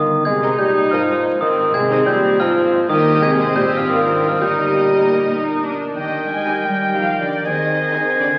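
A playful, whimsical cinematic film cue in 3/4 at 121 BPM in Eb major, magical and quirky, where a ringing, bell-like glockenspiel carries the melody until 5.7 s over a dark bassoon, a loose French horn section holding sustained chords, a woody cello section and a soft-attack double bass section in the background, while two sul tasto violin sections (one intimate on melody, one lush on a second line) and a floating viola section join at 0.4 s, and a bright, up-front oboe and a very quiet clarinet add second lines from 6.0 s, the music set in wet scoring-stage reverb and the crackle of a very old 78 rpm record.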